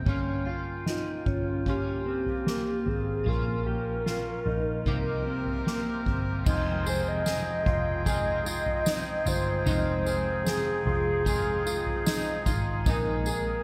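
A warbling, nostalgic lead carries the melody from 0.9 seconds, its detuned, full-bodied tone treated with chorus, tremolo and delay, drifting over a melancholic, hazy dream pop groove in F minor at 75 BPM in a straight 4/4. Beneath it, a soft-mallet drum kit sits up front with a boomy kick, fat snare, tambourine, toms and crash cymbal, all bathed in gated reverb. A dark, foam-muted picked bass holds down the low end with a round tone, while a fingered electric guitar spins chorus-soaked arpeggios with delay. A twangy, picked clean guitar adds accompaniment through harmonic tremolo and analog chorus, and a tight woodwind section with light vibrato sustains warm chords underneath. The harmony moves from Gm7b5 through Bbm and C7sus4, arrives at Fm7 at 6.5 seconds and then shifts to Bb9sus4 at 12.9 seconds. It is all framed by a moderate plate reverb and bright 1980s-style digital production in this cut from a longer piece.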